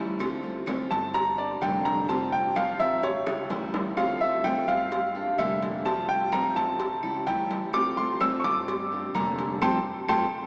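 A bright baby grand piano sits up front, spinning brilliant, intimate arpeggios high in its range with audible action noise and long sustain, over a picked steel-string acoustic guitar with finger squeak, a dark, thumpy gut-string upright bass, and background claves, ringing congas and tight, high-tuned cowbell and bongos. This sultry Cuban son and guajira groove moves at 127 BPM in D minor, cycling through Dm7, Gm, Fadd9 and A7, with a drum fill at 3.3 seconds and a band accent at 9.6 seconds. Cathedral reverb bathes the cut in a long church-like tail, though the overall sound is small-speaker.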